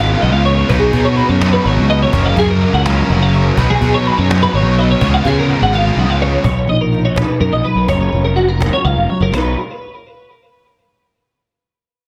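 This math rock and midwest emo excerpt moves in a straight 6/8 at 84 BPM in B lydian, with a bright, intricate mood. An up-front twelve-string electric guitar carries bright arpeggios throughout, its clean, twangy, compressed tone thickened by ensemble chorus and digital delay. Beneath it, a double-tracked, overdriven stack guitar drives a picked riff, while a punchy fuzz bass with a direct-and-amped sound anchors the low end through the whole passage. A woody cajon played with soft hands sits distant in a large room, its faint snares adding texture, and its kick and snare drop out from 5.7 seconds just before the stack guitar stops at 6.4 seconds. A dark, fingered mellow electric guitar then enters at 6.5 seconds with clean accompaniment as the harmony shifts toward Bmaj7 and F#maj7, after earlier colors like C#7sus2, F#maj9 and C#13. Light reverb and a dense, heavily limited modern master keep the mix full and loud.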